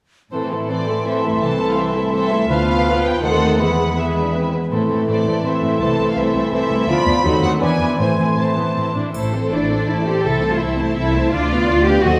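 This excerpt from a fast, dramatic Romantic orchestral movement opens at 0.3 seconds with a full texture: a small, airy flute group with a crisp attack, a distant clarinet and bassoon in the background, a mellow French horn section holding sustained chords, a ringing fingerpicked harp spreading arpeggios, and lush bowed viola and cello sections carrying the accompaniment and bass. At 0.7 seconds a rich, smooth violin section takes the melody, while a second violin section sits in the background with expressive vibrato. The music is in A minor at 165 BPM in 3/4, played with rubato. Its mood is urgent and restless, and the harmony circles through A minor, B diminished and D sharp diminished seventh chords onto E before falling back. The violas stand out as close and expressive, with a soft attack and portamento. The winds and horns drop out at 8.9 seconds, and at 9.1 seconds a rich double bass section enters with a brief, dry triangle. 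All of this sits in a wet scoring-stage reverb.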